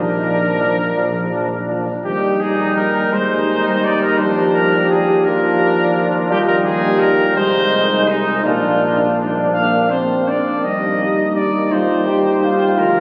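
In a slow, straight 6/8 at 56 BPM counted in dotted quarters, this brief excerpt from a longer classical piece for brass quintet moves with a stately, warm mood in Eb major. Up front, a clear trumpet carries the melody between Eb4 and F5 with light vibrato, a soft attack and a vintage tone, while a flugelhorn sits more distant and roomy on a second line. A French horn, clear and soft-edged, stays in the background of the accompaniment alongside a warm euphonium, both with light vibrato. Underneath, a distant tuba holds the bass with vibrato, and all five parts play together throughout. The harmony moves from Bb through Eb, Ab/Eb and Bb/Eb to Ab/C and Bb before landing on Eb as a new section begins at 10.6 seconds. Captured on a phone in the room, the sound is bathed in a wet cathedral reverb that lingers long after each chord.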